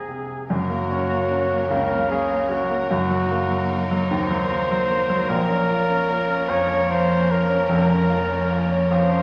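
Melancholic and dramatic, this six-eight pop ballad opens with a brief fill from a clear, polished baby grand piano as a smooth, punchy flugelhorn solo with light vibrato carries the melody up front throughout, joined at 0.5 seconds by a lush bowed string section whose expressive vibrato and portamento sustain chords beneath, all set in the wet reverb of a recital hall.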